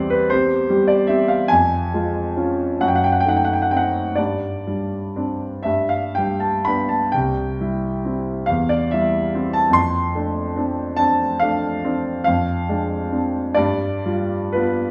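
A concert grand piano carries this romantic classical nocturne alone, its tone clear and open with a deep bass, spanning C2 to C6 and sitting up front. The mood is nostalgic and tender, unfolding in a slow 6/8 at roughly 39-52 BPM counted in dotted quarters, with a freely breathing rubato feel. The harmony stays in C major but leans into richer colours along the way, moving from C/E through Db/F and F#dim7 before settling onto Gsus4 and G. A second phrase returns to C and passes through Dm7/F and Dm7b5/F, closing on G7 at 13.6 seconds. A wet stone room reverb of about one second surrounds the instrument, which is heard from further back in the room. This 14.9-second passage is cut from a longer piece and ends on that unresolved G7.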